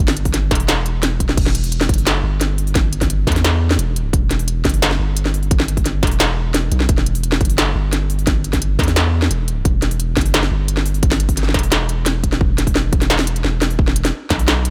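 A dry, close-sounding mix with little reverb opens this short cut from a half-time drum and bass track, tense yet spacious and sitting entirely in its drop. A deep, long-sustained 808-style bass with a sine-like tone, fast attack and mellow decay sits up front, given grit by tube saturation, and it starts at 0.0 seconds. An industrial drum kit with a clanging snare, crisp hi-hats and crash cymbal is pushed up front, while a heavy electronic kick joins at 0.3 seconds; both kits carry the character of being re-recorded in a small room.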